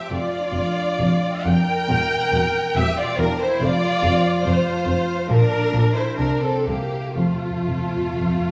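A bright viola section sits up front in this tender classical passage in F major, its focused, bowed vibrato carrying the accompaniment at a slow, rubato pulse of about 57-73 BPM in 4/4. A clear violin section holds the melody from the background, while a second violin section adds a smooth, distant second line. Cellos and double basses share the bass in a lush, rich blend, and a mellow concert harp plays ringing, fingerpicked arpeggios behind the strings. The harmony moves from Gm7/F through C7/E, F, Gm/Bb and C before arriving on F at 7.2 seconds, where timpani with hard mallets and calf heads enter close and articulate on F2 for a fill. A wet scoring-stage reverb gives the strings a warm, spacious glow, and the passage is cut from a longer piece.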